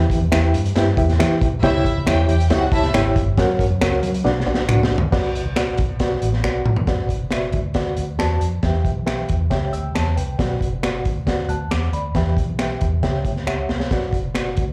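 An excerpt of uptempo 1960s-style soul in B minor at 137 BPM, driving and passionate, opens on a reedy, slightly out-of-tune electric piano with fast tremolo and slapback echo over a dark, foam-muted fingered bass, joined at once by a crunchy breakbeat kit with a punchy kick, high-tuned snare and dark cymbals, plus finger snaps set back in the mix. A warm chamber string section with gut-string tone and light vibrato plays a brief second line from 1.6 to 2.9 s, as the chords move through Em, C#dim and F# toward Bm. Drum fills mark the turns at 4.2 s and 13.5 s, and the whole performance sounds like a live gig heard through the venue's PA, with club reverb.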